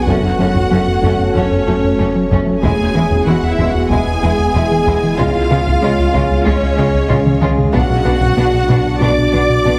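A heavily compressed, radio-like sound set in a moderate scoring-stage reverb frames this tense, relentless excerpt of hybrid orchestral and electronic film score in B dorian at 94 BPM, moving through F#m, E, C# and Bm. A rich, lush violin section carries the vibrato-laden melody over clear, intense violas, a distant second violin line, dark background French horns and an ethereal, wave-folded pad with chorus, while a rubbery square-wave bass riff and a punchy sub bass drive the low end alongside very quiet bowed cellos and double basses. A very quiet taiko ensemble struck with heavy sticks plays a drum fill at 7.1 seconds, and a felt-muted upright piano with audible action noise adds soft texture until 7.8 seconds.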